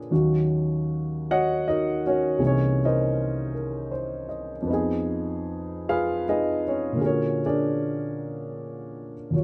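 A dark, mellow grand piano sits up front in a light reverb, its long sustain hanging in the air through this short excerpt of a jazz ballad. Playing alone at a slow 52 BPM in 4/4 with a gentle swing, the piano spans from C2 to Gb5 and moves through Ebm7, C7alt, Fm7b5 and Bb7alt. The mood is intimate and wistful, a brief passage cut from a longer piece that ends at 9.4 seconds.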